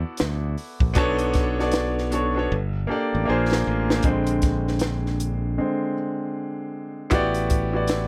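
R&B and neo-soul with a smooth, warm swing, cut from a longer piece and set in a light reverb. An intimate, clear baby grand piano with audible action noise and long sustain sits up front, joined by a growly, bright fingered electric bass and a compact, dry cocktail kit with a punchy kick and high-tuned snare. A drum fill leads into a piano solo at 4.0 seconds, a break follows at 5.6 seconds, and the harmony lands on an A13sus4 chord at 7.1 seconds.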